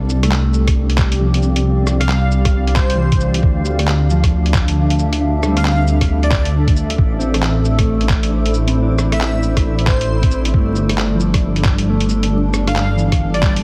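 Future garage with a nocturnal, melancholic, swung feel, built on a thumpy, muffled kick and a deep, rumbling detuned saw bass that pumps under sidechain alongside a cloudy, evolving granular pad and a clean electric guitar tucked in the background with spring reverb and analog delay, while a lo-fi sampler-style kit of cabasa, handclaps, hi-hat and rim click ticks along, a very quiet breathy wind-like noise texture drifts in from 0.8 seconds, and an airy, dreamy lead with chorus, vibrato and tape echo sings from 2.0 to 6.4 seconds and again from 9.1 seconds, all wrapped in a heavily compressed, dry radio-like sound with vinyl crackle.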